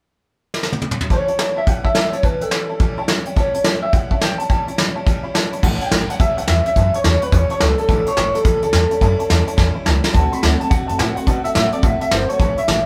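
Opening with a brief brushed drum fill at 0.5 seconds, this upbeat, rollicking rockabilly excerpt in A mixolydian swings at 212 BPM as a twangy, slightly broken-up electric guitar with vibrato carries the melody over jangly, detuned honky-tonk upright piano fills in the background, a full-bodied picked steel-string acoustic guitar and up-front brushes, with a thumpy, woody pizzicato upright bass joining at 5.6 seconds, all captured live in one room with moderate reverb as the chords move from A7 to D7 at 10.1 seconds.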